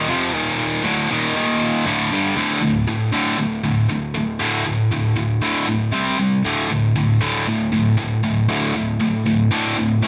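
A high-gain distorted guitar dominates this short metal passage, playing solo and up front from start to finish across its 10.1 seconds. The mood is dark and aggressive, set in a straight 4/4 feel. The picked, double-tracked guitar has a bright edge, carrying distortion along with a digital delay. The opening stretch leans on Eb5 and D5 power chords before a new section begins at 2.4 seconds, later moving through C5 and back to D5. A light reverb gives the sound a little space, and the clip is cut from a longer piece.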